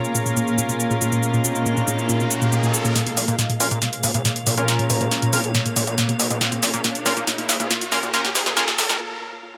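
A dark, industrial slice of driving peak-time techno opens on a punchy, overdriven analog drum machine of hi-hat, shaker and snare, sitting up front, while edgy sync-sweep polysynth stabs with chorus and delay cut across a swarming, phaser-tinged drone and a cloudy granular pad that drift in the background. A woody, wave-folded pluck riff with a warbling, vintage character joins almost at once, a background riser creeps in from 0.7 seconds, and a gritty, aggressive driven synth bass arrives at 3.2 seconds as the build-up begins. Filter sweeps on the synths and a drum fill push the tension higher before a brief break at 9.0 seconds, all set in a moderate plate reverb.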